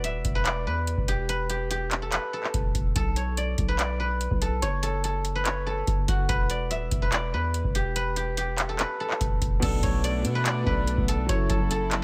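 A small room holds this dark, hard-hitting half-time trap cut at 144 BPM in B minor, where a silvery, ringing guzheng melody with a low-pass filter sits up front over a deep, sine-toned 808-style bass and a dry, booming analog drum machine with a deep kick, metallic hi-hats, handclaps and crash, and at 9.6 seconds a mellow concert grand piano with audible action noise and a floating background string section join in.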